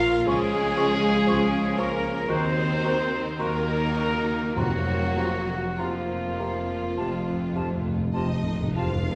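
Yearning and solemn, this rubato romantic orchestral passage sets a lush, very quiet violin melody with vibrato over a second violin line, a hollow flute and a mellow clarinet, while rich violas and a soft bassoon accompany, dark French horns and trombones hold distant sustained chords, up-front trumpets add stabs, ringing harp arpeggios and a focused cello and smooth double bass foundation fill the recital-hall reverb, and hard-mallet timpani enter at 4.6 s with a fill from 7.0 s.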